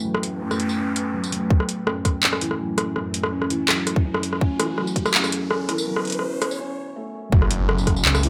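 A half-time drum and bass groove at 165 BPM in 4/4 drives this tense, cinematic excerpt in F# phrygian. An up-front electronic kit of handclaps, metallic hats, rim click and tambourine starts almost at once, and a tight, layered electronic kick joins at 1.5 s as the build-up begins, with a riser leading into a short break and an impact at 7.3 s. Underneath, a deep, moody ambient pad holds sustained chords in the background, its chorus and built-in reverb lending it a dark haze. A felt-muted upright piano plays soft, intimate arpeggios with audible action noise through a low-pass filter and digital delay, while a very quiet, pulsing, tempo-synced texture sits in the opening seconds and electronic noise sweeps add tension. At the impact, a swirling, thick, saturated saw bass arrives up front with a phaser, closing a chord movement from Gadd9 through F#m7 and Bmadd9 back to F#m7 within a moderate digital room.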